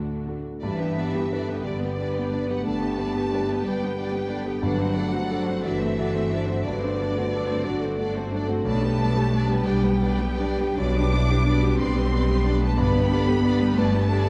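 Lyrical and lush, this short classical passage flows in a rubato 12/8, cut from a longer work and set in a moderate concert hall with a dark, warm production. A clear concert grand piano sits up front carrying the melody, its deep bass natural, while a distant violin section also carries the tune with focused, vibrato-rich bowing. From 0.6 seconds a second violin section adds a soft-attacked, expressive line, and a dark French horn section holds sustained chords in the background with light vibrato. Smooth, even violas fill out the accompaniment, and the rich cellos and warm double basses anchor the bass with ensemble vibrato. Timpani played with medium mallets on calf heads give quiet accents around 4.6 and 12.8 seconds as the harmony moves from D to G, through D7 over G, and back to G.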